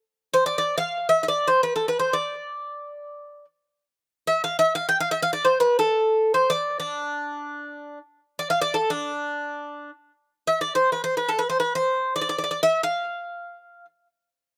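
A lone Greek bouzouki enters at 0.3 s and plays in free time, unfolding a longing, melancholic line in D makam huseyni in the spirit of a Turkish makam ensemble, moving between D4 and G5. Its picked double strings, some doubled at the octave, give a bright, metallic ring that sits up front in a dry outdoor sound with little reverb. The bouzouki stops at 13.8 s, in this short fragment cut from a longer piece.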